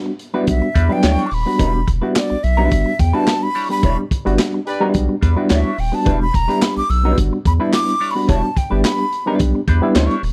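Hypnotic, driving funk excerpt in which a breathy, unsteady jazz flute solos over reedy electric piano stabs with overdrive, tremolo and tape echo, twangy wah-inflected clean guitar, a round, deep analog bass, and a crunchy, gritty breakbeat kit with handclaps, while a distant horn section in octaves enters briefly at 4.7 seconds during a band accent, all in a dry, close 1970s-style studio sound.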